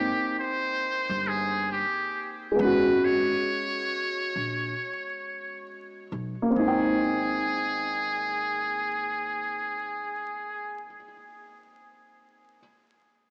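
Dreamy and mellow, this slow lo-fi hip hop excerpt at 68 BPM in Ab major drifts on swung sixteenths as a buzzy, distant muted trumpet sings the melody through a low-pass filter and diffuse ambient delay until 10.8 seconds, over a dark, intimate upright piano with audible action noise moving from a rootless Abmaj7 to Abm11 and back, and a thumpy pizzicato upright bass that stops at 11.0 seconds, all bathed in a wet plate reverb, vinyl crackle and a small-speaker sound.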